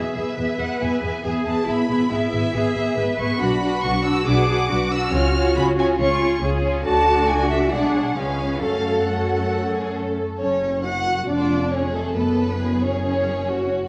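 A focused, up-front first violin section carries the melody in this quick, spirited classical-period movement for string orchestra, its bowed line rich with vibrato and climbing as high as E#6. Beneath it, a second violin section adds a soft-attacked, lush counterline, while a dark viola section fills the middle with expressive accompaniment. Cellos and double basses share the bass, the cellos smooth and even and the basses entering at 0.1 s with a deep, even foundation. At 138 BPM in a straight 4/4, the music opens in E major and turns toward F# minor from 3.4 s, with a second section beginning at 10.4 s that moves through F#5, Fm6 and F#m harmonies. The orchestra sits in a wet recital-hall reverb, and the whole recording carries the worn, warbling pitch drift of old cassette tape, giving this lively fragment of a longer piece a worn, aged cast.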